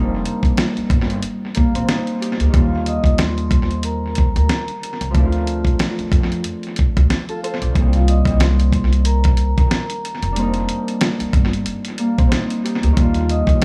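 A thumb-plucked Celtic harp, mellow and filtered through a cassette-tape haze, opens this gritty, dark boom-bap hip-hop excerpt alongside a woody pizzicato upright bass on gut strings, with a compressed, sampler-style soul drum kit arriving up front at 0.3 seconds, its thumpy kick, fat snare and hi-hat trailed by tape echo. At 2.7 seconds a soft-mallet vibraphone takes the melody, metallic yet smooth, sitting low in the mix with slow motor vibrato, filtering and tape echo. The swung groove moves through minor-seventh and major-seventh chords inside a small, echo-heavy room.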